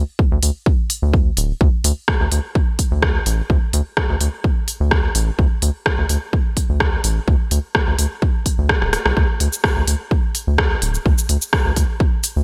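Quirky and clinical, this short minimal techno excerpt runs at 127 BPM in 4/4, with a light 53% swing on the sixteenths and a tuning of A4 = 441 Hz. A rubbery square-wave bass opens the piece, hollow and bouncy with a resonant filter pluck, sitting dark and up front between D1 and D2, thickened by tube saturation and pumped by sidechain compression. A punchy, layered electronic kick arrives at 0.2 seconds, joined at 0.4 seconds by a house drum kit of crisp hi-hats, rim clicks and shaker, treated with gated reverb. A drum fill leads into a drop at 9.2 seconds that carries the cut to its end. The production has a bright 1980s digital sheen and a light room reverb.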